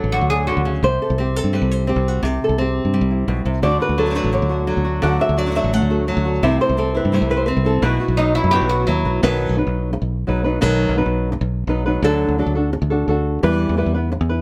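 In a straight, four-beat flamenco groove, this fiery yet mournful fragment of a longer piece sets a thumb-plucked acoustic flamenco guitar melody up front over a punchy, foam-muted fingered electric bass, while a woody, double-strung oud adds brief second-line phrases near 0.1 and 8.2 seconds, and a second bright, fingerpicked flamenco guitar with audible finger squeak and tape echo plays lower stabs from 3.6 seconds, all within a light reverb.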